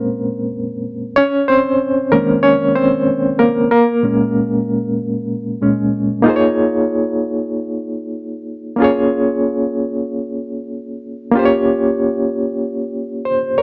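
A barky, reedy electric piano plays alone throughout this short soul cut, its lightly overdriven tone pulsing with fast tremolo through built-in speakers and sitting up front in a light reverb. At 94 BPM in 4/4 with a gentle swing on the sixteenths, the mood is smooth and cinematic, moving through Bbm7, Eb7sus4, Eb9sus4 and closing on Gm7b5. The sound is warm, with nothing above 7.9 kHz, and the passage is cut from a longer piece.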